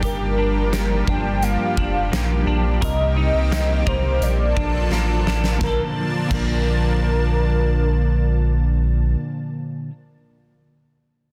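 A straight 4/4 pulse at 86 BPM drives this floating, dreamy slice of dream pop in Bb major, with a huge arena drum kit of punchy kick, fat snare and bright cymbals playing a fill at 4.9 seconds and then dropping out at 6.5. An up-front sub bass with a deep, round sine tone anchors the moves from Gm7 through Cm7 to Bbmaj7, beneath a lush, detuned sawtooth pad holding sustained chords and a clean, hollow-body electric guitar picking arpeggios through ensemble chorus and delay. On top, a velvety synth lead sings the melody with chorus, tremolo, vibrato and delay until 9.2 seconds, when the guitar carries on alone in a dense, heavily limited master with light room reverb.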